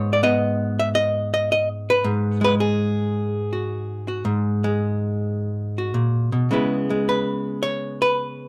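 A lone archtop guitar, miked and amplified, opens this solo jazz fragment, its electric, clean, hollow-body tone sitting up front. The mood is smoky and swinging, with a loose rubato feel over a gentle swing in four. Each picked note comes through dark, ranging from the low register up into the upper strings. The harmony rests on a G#m7 colour before moving to C#m7 at 6.5 seconds, and the passage breaks off at 8.5 seconds as part of a longer performance. Close, detailed microphones and a touch of light reverb give the guitar an intimate, late-night presence.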